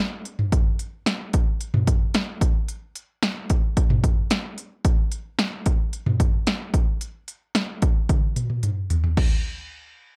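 Cool and driving, this pop excerpt moves at 111 BPM in a straight 4/4, carried entirely by an electronic, layered house drum kit that plays from 0.3 to 9.3 seconds with a punchy kick and snare, crisp hi-hats, crash cymbal and toms. The kit sits up front, re-recorded in a large room and given a light reverb, and a drum fill closes out the passage from 8.1 to 9.2 seconds.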